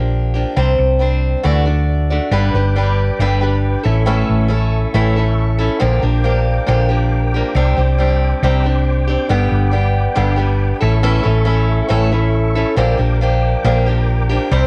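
Rock excerpt with a hopeful feel, where a dark, woody picked acoustic guitar with old strings and a round, punchy hollow-body bass sit up front in a small room with light reverb, joined at 2.3 s by a clear tonewheel organ holding sustained chords in the background through a slow rotary speaker and chorus vibrato.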